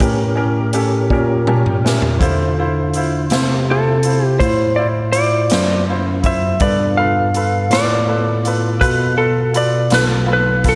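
Rollicking yet laid-back, this slow 12/8 blues at 54 BPM moves from A7b9 to Dm7 and G9, with a barky tine electric piano carrying the bass up front through a phaser beneath a brilliant, woody upright piano with slapback echo and the faint, clear sustained chords of a tonewheel organ on rotary speaker. A polished, airy big-band drum kit with a punchy kick swings along, and the drums and upright piano both play a fill from 1.1 to 2.2 seconds. At 3.7 seconds a dark, compressed lap steel guitar picks up the melody with slide and slapback echo, all set in a big arena sound with moderate reverb.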